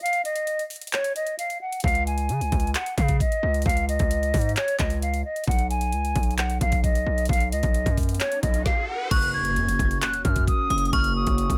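A hollow, airy concert flute opens this triumphant yet dreamy trap excerpt, its close-miked tone carrying vibrato and a crisp attack through a low-pass filter while the trap kit comes in almost at once. The half-time groove at 132 BPM in F# major rests on a knocking kick, woody snare, metallic hi-hats, handclaps and crash, all placed up front. At 1.8 seconds a heavy, saturated 808-style bass arrives with a fast attack and a gritty noise layer, and the harmony moves from C#5 to B. A riser begins at 8.1 seconds and lands on an impact at 9.1 seconds, where the chord settles on F#. In this final stretch, an inharmonic, ringing FM bell with chorus and digital delay joins a smooth, dark analog pad that holds sustained chords with a slow attack and long release. The mix is dry and close, with little reverb.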